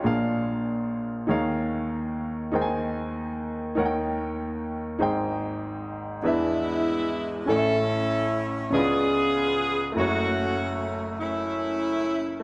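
A clear, up-front baby grand piano opens this reverent yet jubilant slow gospel passage in 6/8 at 48 BPM in Ab major, laying down rich chords such as Bb7, Eb9sus4 and Abmaj7 before a jazz-style saxophone section, up front with light vibrato, takes the melody at 6.2 s as the harmony shifts through E7 and Amaj7 to F#m7, all bathed in a long concert hall reverb with a dark production, in this excerpt cut from a longer piece.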